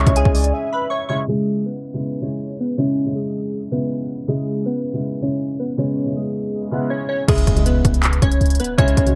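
A half-time trap groove at 160 BPM in C# minor drives this short, hard-hitting, dark excerpt cut from a longer hip hop piece. The trap drum kit, built from a hard-clipped kick, crisp hi-hats, handclaps and crash cymbal, sits up front but strikes only briefly at the start before a break, then returns at 7.3 s alongside a deep, boomy 808-style bass with a noise layer holding C#2. Glassy digital keys carry the melody throughout, their sine tone treated with chorus and a low-pass filter sweep that runs through the long middle stretch. Underneath, a dark baby grand piano plays accompaniment with a boxy, intimate character, short sustain and audible action noise. A velvety detuned synth lead with vibrato, chorus and delay adds a second line only in the opening second, and a background electronic impact lands at 7.4 s as the drums come back. The production is dark and dry, with little reverb and a rounded, filtered top end.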